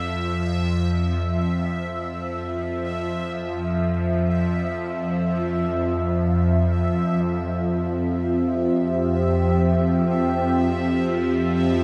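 In free time, this desolate, cavernous dark ambient drone excerpt rests on a tense, string-like bowed drone between F2 and F3, sitting up front with a bright, detuned sawtooth edge, a noise layer, vibrato and phaser. High above at E5, a quieter bubbling texture steps randomly through a resonant filter with chorus. From 5.8 s a warbling, vintage-sounding pad joins with sustained Fsus2 chords, all set in a long, wet cathedral reverb and a warm production.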